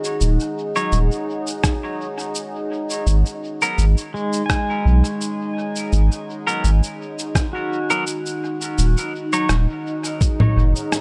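An echo-heavy, dry-roomed mix opens this short cut from a longer ambient dub piece at 84 BPM: a deep, spacious groove in 4/4 with a light sixteenth-note swing, moving between D#m7 and G#m7. A round sine sub bass sits up front under a thumpy, muffled, pitched-down electronic kick and sampler-style shaker, rim click and congas soaked in dub echo. Above, a moody, detuned sawtooth pad with chorus holds sustained chords, a bright, twangy clean electric guitar adds echoing stabs from 0.8 seconds, and a warm pedal steel guitar slides through dub-echoed arpeggios from 4.1 seconds.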